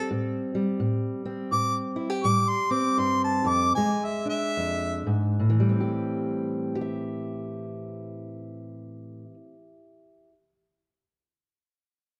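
A mournful, smoky acoustic country blues fragment opens with a soft-attacked, lightly vibrato-tinged harmonica soloing in jazz style with scooped notes over dark, fingerpicked steel-string guitar with audible finger squeak, both up front, as the opening slows and moves from Am7 to E7 and back; the harmonica drops out at 5.1 s while the guitar carries on to 10.3 s, all bathed in a recital-hall reverb within a warm, shadowy production.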